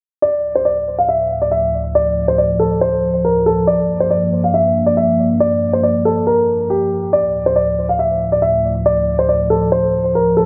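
A half-time hip hop feel at 139 BPM in 4/4 carries this tense, cold fragment in D minor, cut from a longer piece, moving from Dm to Gm7 at 3.7 seconds and back to Dm at 7.1 seconds. A clear, natural concert grand piano sits up front with a melody between G4 and F5, softened by a low-pass filter and trailed by analog delay. Beneath it, a dark, detuned analog pad with chorus holds slow-attack chords from D2 to Bb3, its square and sawtooth tones, sub octave and ring modulation giving a moody depth, all set in an echo-heavy mix with moderate plate reverb.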